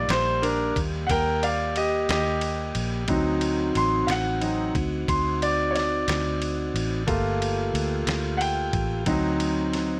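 A bright concert grand piano leads this soulful, mournful slow blues, its brilliant, open tone and long sustain standing up front as it solos across the whole 10-second fragment cut from a longer piece. Set at 60 BPM in a straight 12/8, the harmony moves from Ebmaj7 to D7b9, then to Gm7 at 7.1 seconds before returning to D7b9. Beneath the piano, a mellow tonewheel organ holds soft, flute-like sustained chords with a hint of key click, turning through a slow rotary speaker. A vintage muted fingered electric bass sits low and punchy, its dark, round, foam-muted sound also pushed forward. A lo-fi sampler-style drum kit of kick, snare and ride sounds compressed, pitched down and muffled, with a thumpy kick and a tape-warm haze, while the dry room carries little reverb.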